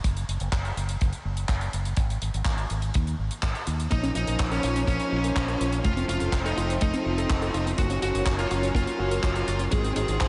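Bittersweet and nostalgic, this italo disco piece in Bb minor moves at 124 BPM, opening with a bright, punchy fingered electric bass through an envelope filter, a tight dry kick and a damped 70s drum kit with handclaps and hi-hat, before a dark, distorted fuzz lead guitar with diffuse ambient delay, a floating bowed string section holding soft sustained chords, and mellow detuned sawtooth pluck arpeggios with tape echo arrive at 3.9 s over a Bbm, F, Gb, Ab progression, set in a dreamy mix soaked in huge ambient reverb.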